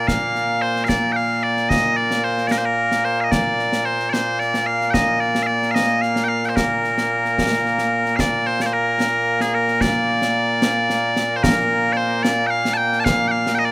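This short excerpt of Scottish pipe music has a light reverb, with the bagpipes loud, bright and up front. The mood is proud and stirring, set in 6/8 at 74 beats per minute counted in dotted quarters, with a straight feel in Bb major. A solo set of bagpipes carries the melody from start to finish, its continuous, piercing tone ranging from Bb2 up to A5. Concert snare drum and concert bass drum sit further back, entering at 0.1 seconds with an acoustic, small-room sound and bright cymbals. The tune moves into a new section at 8.2 seconds, and the piece is cut from a longer performance, stopping at 13.7 seconds.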